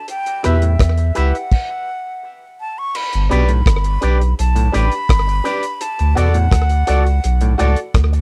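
Serious and meditative, this roots reggae excerpt at 84 BPM carries a breathy jazz flute melody with tape echo over a cloth-damped, thuddy drum kit with slapback echo, a deep, round dub sub bass up front, a twangy envelope-filtered electric guitar with tape echo, stringy mellow clav arpeggios and brilliant, worn grand piano stabs, captured in a dry, close 1970s-style studio recording, with a stop from 1.5 to 2.9 seconds before the harmony moves from G to D.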